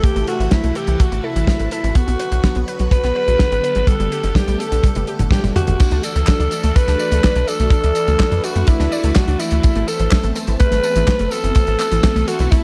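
Italo disco at 125 BPM with a danceable, bittersweet mood: a breathy, raspy alto saxophone carries the melody up front through tape echo, over swirling phased string-machine chords with 12-bit sampler grit, a detuned analog pluck playing arpeggios in the background, a punchy sawtooth sequencer bass, a dry up-front kick, and a damped 70s kit with dark cymbals, handclaps and tambourine whose fill from 4.8 to 5.8 seconds leads from Am, Bm and Gadd9 into Dadd9 and Amadd9, all in a dark production.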